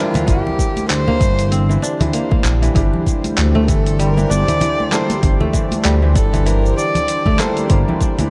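A 97 BPM groove in 4/4 with a 58% swing on the sixteenths sets this short organic downtempo excerpt in G dorian, its mood warm and mystical. A deep, tape-warm electronic kick and a gritty, overdriven sampler-style kit of congas, handclaps, hi-hat and shaker drive the beat, while separate bright, hard-handed congas sit in the background and a smooth, mellow synth bass with vibrato sits up front between G1 and D2. A crisp, ringing fingerpicked kora plays arpeggios with delay, and a soft felt-muted upright piano adds intimate, short-sustained accompaniment treated with delay and sidechain pumping. A detuned analog pad holds sustained chords behind them, colored by chorus, tremolo and sidechain pumping. Over it all, a single close, airy-bowed kamancheh carries the melody with light vibrato and portamento through a delay, over chords moving from C9/G to Gm69 at 2.8 seconds, in a dark production with light reverb.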